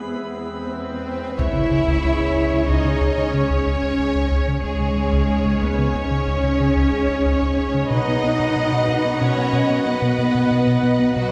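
Cinematic hybrid orchestral and electronic film score in 5/4, vast and futuristic and cut from a longer piece, where dark sul tasto violas, an eerie, metallic FM drone and lush, up-front cellos open under an electronic build-up with a filter sweep and swell that lands on an impact at 1.4 seconds, bringing in a rich, distant violin melody alongside a soft-edged second violin line, very quiet mellow French horns and vintage trombones holding chords, a round, deep analog bass riff and smooth bowed double basses, the whole heard from further back in a wet scoring-stage reverb.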